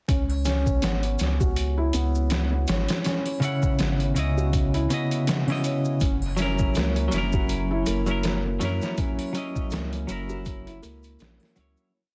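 The recording sits in a dense, heavily limited modern master, with vinyl crackle and digital ambience around it. This is a brooding, cinematic trip hop piece with a swung groove and a fade-out that begins at 8.0 seconds. A pitched-down, sampler-style drum kit plays a looped breakbeat with edits, up front and gritty, with a thumpy kick and a medium-tuned snare that sound tape-warm, re-recorded in a small room. Beneath it, a round sine sub bass carries a deep, sustained dub-style line, while maracas, shaker, triangle and a group handclap add loose, close, dry percussion in the background. A felt-muted upright piano repeats a soft, intimate 16-step arpeggio with audible action noise, roughened by vintage 12-bit sampler grit and a digital delay. From 3.4 seconds, a bright, clean semi-hollow electric guitar adds syncopated chord stabs in spread voicings, colored by harmonic tremolo and tape echo, as the harmony moves from C#madd9 to F#7 at 6.0 seconds.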